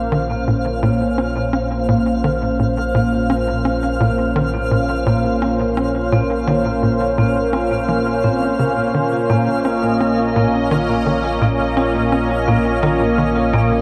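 A bright, airy pad with a detuned sawtooth edge and a breathy noise layer sits up front, holding sustained Bbmadd9 chords that evolve slowly under a resonant filter and a touch of chorus. This is ambient, sequencer-driven space music with a hypnotic, expansive mood, in a steady, straight four. Beneath it, a punchy, nasal sequencer bass drives a tight plucked riff, coloured by subtle chorus and analog delay, while a round sine sub bass holds a deep low note throughout. A mellow vibraphone played with soft mallets fades in over the whole 13.8 seconds, its metallic, ringing arpeggios sitting in the background with a slow motor vibrato, a boxy small-room tone and analog delay. High above, a twinkling granular texture adds sparkling FM shimmer an octave up, bathed in its own reverb. A moderate plate reverb and a worn, warbling cassette-tape character with drifting pitch give this section, cut from a longer piece, a faded, dreamlike patina.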